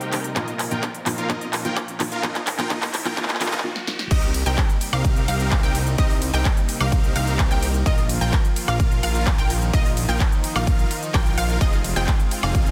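A muted, felt-softened upright piano with audible action noise, a warbling vintage pad, huge detuned supersaw chords, an overdriven big-room drum kit with crisp hats and a very quiet riser open this anthemic, emotional festival progressive house excerpt in C minor at 128 BPM together, with a punchy up-front kick joining moments later through a build-up and drum fill, before the drop at 4.1 seconds brings in a fat, saturated analog bass and a bright, background sawtooth pluck arpeggio over pumping Cm7, Bbsus4 and Fm7 harmony in a dense, heavily limited mix.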